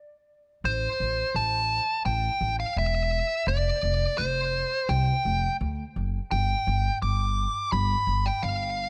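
A woody, plucked upright bass opens the excerpt at 0.6 s in a brooding, melancholic post-rock mood, joined almost at once by an up-front electric lead guitar whose parked wah gives its overdriven, picked melody a nasal bite, trailed by analog delay. The two parts move over a straight progression from Am through Fsus2 to G5. The dark production keeps the room dry and close.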